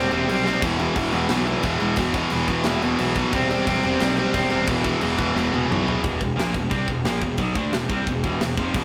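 This epic, heavy metal piece in E minor opens at 178 BPM in a half-time feel. A biting, double-tracked overdriven guitar and a scooped high-gain guitar sit up front, with a very quiet sludgy distorted guitar beneath them, while a growly fuzz bass holds down the low end over C/E and E5 chords and a tight acoustic drum kit with bright cymbals and big-room air adds fills. At 6.0 seconds the biting and sludgy guitars stop and the half-time feel ends, leaving the scooped guitar, bass and drums to drive the next section through a rough rehearsal-room sound with light reverb.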